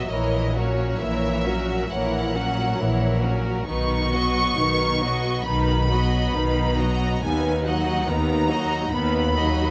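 A clear violin section sings a serene, tender melody over a second violin line and bright violas from the very start of this slow, rubato romantic movement for string orchestra in B major at 68 BPM, joined at 0.1 seconds by smooth cellos in the background and a rich double bass section, every section bowed with vibrato as the harmony moves from F#7/A# to B and then B/D#, captured with close, detailed microphones and light reverb in a passage cut from a longer piece.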